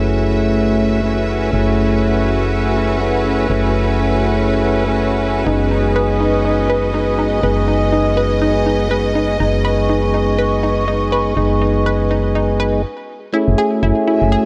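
Deep house at 122 BPM in F# dorian with a swung 16th feel and a warm, smooth mood, built on a dark, up-front FM bass holding F#1 under stabs from a round tonewheel organ with key click and slow rotary speaker, a biting, close symphonic string section with light vibrato, and a hollow, flute-like pad sitting in the background with chorus and vintage sampler grit, while a nasal, detuned analog pluck enters at 5.5 seconds with chorused, phased arpeggios as the chords move from F#m9 to G#m/F#, a filter sweep runs on an analog synth pad, and everything halts briefly at 12.8 seconds before a drop at 13.3 seconds, all colored by light reverb and cassette tape.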